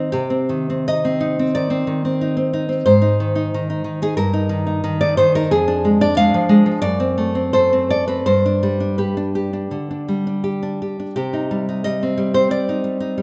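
Rubato phrasing pulls and yields against a loose 4/4, giving this romantic solo classical guitar piece an unhurried, breathing pulse. The mood is wistful yet passionate, as though each phrase carries a private ache. A single nylon-string guitar, fingerpicked and placed up front, covers a span from F2 to F5, its acoustic tone warm. The harmony drifts through a darkened chain of chords, lingering on diminished colors before settling on a dominant at 8.2 seconds and coming home at 11.2 seconds. A moderate recital-hall reverb lends the instrument a gentle, natural bloom. This brief passage, cut from a longer piece, runs to 13.2 seconds.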